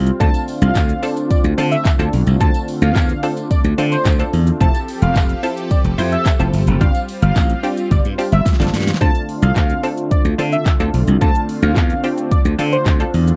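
A straight 4/4 pulse at 109 BPM drives this euphoric, summery dance-pop excerpt, cut from a longer piece. An electronic, layered pop drum kit sits up front with a punchy kick, fat snare, metallic hi-hats, handclaps and shaker, all with a tape-warm sheen, and a drum fill from 8.5 to 9.0 seconds leads into a second drop. Alongside it, a bright, growly slap bass pumps with sidechain, as do a detuned, nasal unison lead carrying the melody with vibrato and slapback echo, chorused sawtooth chord stabs with a quick filter pluck, and a mellow filtered supersaw swell whose moving notch keeps the sustained chords evolving. A jingly acoustic tambourine stays in the background until 9.0 seconds. The harmony moves from Dm7 through Fmaj7 and G7sus4 before returning to Dm7, all captured in a dry, close 1970s-style studio sound with little reverb.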